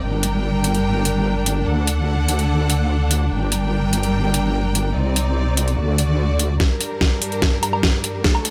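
Heavy wobble dubstep with a chaotic, aggressive mood, cut from a longer piece and moving in a half-time feel. A clear, lush symphonic string section holds bowed, vibrato-rich chords throughout, pumping under sidechain compression as the harmony moves through G minor, D and a C minor add9 chord. Up front, a saturated sawtooth wobble bass with detuned, chorused overdrive growls low until 6.6 seconds, while the overdriven drum kit enters at 0.2 seconds with a deep snare, metallic hi-hats and woodblock, re-recorded in a small room. At 6.6 seconds the track shifts into a build-up with a drum fill, and a knocking, overdriven electronic kick drum joins until 8.3 seconds. Light reverb gives the mix a touch of space.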